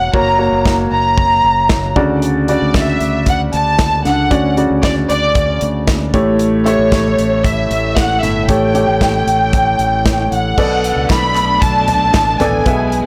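A straight 4/4 pulse at 115 BPM drives this anthemic, uplifting piano-driven pop in D major, with a tight-kicked acoustic drum kit and a fingered electric bass with a warm, direct and amped tone underpinning a clear, intimate baby grand whose action noise and long sustain sit up front. A lush, vibrato-rich violin section carries the melody high over chords moving from F# through Dmaj7 and A7. At 10.6 seconds a focused string section adds sustained chords in the background over Bm7, and a crisp, very quiet group handclap joins at 11.1 seconds, all within a blown-out, overdriven recording with light reverb and studio ambience.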